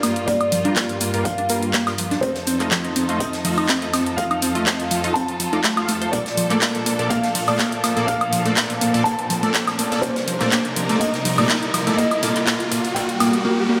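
This dreamy, emotional stretch of progressive house, cut from a longer piece, opens as a build-up with a dark, mellow concert grand piano carrying the melody through lush chorus, tape echo, a low-pass filter and sidechain pumping. A distant, bowed symphonic string section holds sustained chords beneath it, while a glassy, crystalline wavetable pluck spins detuned arpeggios coloured by chorus and cassette-tape grit. Two drum kits sit underneath: a very quiet acoustic studio kit with a medium-tuned snare and hi-hat, and an up-front pop kit of bright hats, handclaps and woodblock, with pumping and high-pass filtering on its hats and percussion and studio reverb. Just after the start, a punchy supersaw stab with analog chorus and a filter sweep arrives alongside a very quiet, overdriven electronic kick drum. A background riser enters at 4.3 seconds and a swell at 13.0 seconds, over a progression moving from Gm7 through F7 and Bbmaj7 to Cm7, all bathed in a reverb-soaked hall.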